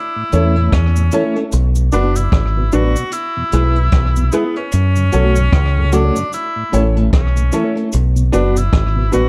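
A swung 4/4 roots reggae groove sets a warm, sunny mood in this short cut from a longer piece: a distant brushed drum kit with boomy kick, hi-hat and rim clicks, a faint cabasa, and a deep, round fingered dub bass up front anchor the band, while a forceful tenor saxophone with vibrato and tape echo carries the melody over background parts from a mellow tonewheel organ with slow rotary speaker and slapback echo, a slightly broken-up picked electric guitar with tremolo and tape echo, and woody, slightly detuned upright piano stabs, all in a dry room.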